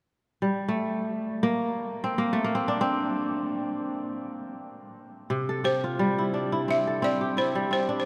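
Heard in a vast, echoing space with a long cathedral-like reverb tail, this short passage from a longer piece of West African string and xylophone music unfolds with a warm, hypnotic mood. The kora enters at 0.4 seconds and plays alone, its fingerpicked arpeggios sounding crisp and ringing as it sits up front in the mix. Around 5.3 seconds the music settles onto a C chord. At 5.7 seconds the balafon joins with a high melody, its woody, buzzing tone struck with hard rubber mallets and kept dry against the kora's resonance. The two instruments then sound together until the passage breaks off at 8.1 seconds.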